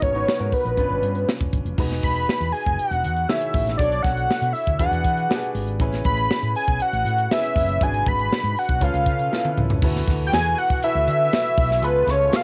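A fat, detuned sawtooth synth lead carries the melody up front over a clear baby grand piano with audible action noise, a growly fretless electric bass and a crisp, airy fusion drum kit in this bittersweet, urban 1980s jazz-funk pop fragment, where lush extended chords and a drum fill at 9.3 seconds lead into a reedy, sweet accordion with light tremolo tuning that enters in the background at 9.8 seconds, all set in light reverb on a home cassette recording.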